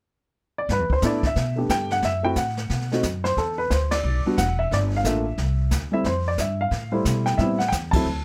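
A dark, mellow baby grand piano carries the melody from 0.6 seconds, joined at 0.7 seconds by a woody, growly upright bass and a brushed jazz drum kit with dark cymbals and a punchy kick, in a relaxed, swinging jazz piano trio cut from a longer piece at 179 BPM in G major, its intimate, up-front piano sounding close and dry with audible action noise as the chords move from G69 through Gm9 and Fmaj9 to Am7, with band accents at 3.9 and 7.9 seconds.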